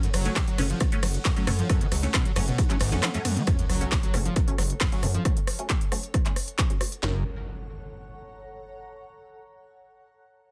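A screaming acid line leads this driving, relentless slice of peak-time techno at 135 BPM in F# harmonic minor, its squelchy, resonant sawtooth riff distorted and chorused, with a filter sweep, digital delay and sidechain pumping. Beneath it a gritty driven synth bass, sawtooth and sine with oscillator sync and saturation, carries the low end, while two layered electronic techno kits sit up front with a tape-tinged, small-room character: one gives a heavy kick, cracking snare and handclaps, the other smooth hats, ride, rim clicks and toms that pump with the sidechain. A very quiet, airy acoustic kit adds a high-tuned snare and hi-hat from 0.1 to 5.1 seconds, and muted, detuned dub chord stabs flicker through a phaser, gaining a filter sweep from 3.5 to 7.0 seconds. A drum fill closes the opening drop, and at 3.5 seconds a sub drop and impact land in the background. A blurred, cloudy granular pad with long release and its own reverb hangs behind everything, lingering alongside the tail of the sub drop after the other parts stop at around 7.2 seconds as the harmony moves from F# minor to F# major.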